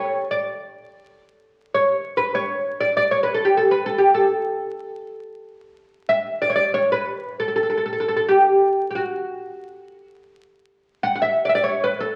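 A solo oud opens at once through the crackle of a very old 78 rpm record, playing in free time in maqam ajam on D. This passionate Arabic maqam performance comes from a longer piece and features the fretless, plectrum-plucked oud alone, its doubled strings giving each note a woody, deep body. The instrument sits up front in the sound, with its line spanning F#4 to F#5. A large studio reverb adds a generous wet tail of about 1.3 seconds around the oud, while the surface noise of the old disc frames the whole performance. The oud plays throughout, from 0.0 to 12.1 seconds, carrying a warm, heartfelt mood in this brief fragment.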